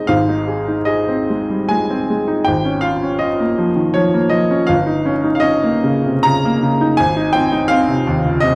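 A clear grand piano opens this brief excerpt alone, sounding present and up front with short sustain. It plays a romantic character piece in Ab major and 3/4 time, moving with rubato between 68 and 85 BPM in a hopeful, passionate mood, its harmony passing from Ab through Bbm7/Ab and Eb7/G before settling back on Ab at 7.0 seconds. A recital hall reverb surrounds the instrument, and the dark production carries a vinyl crackle.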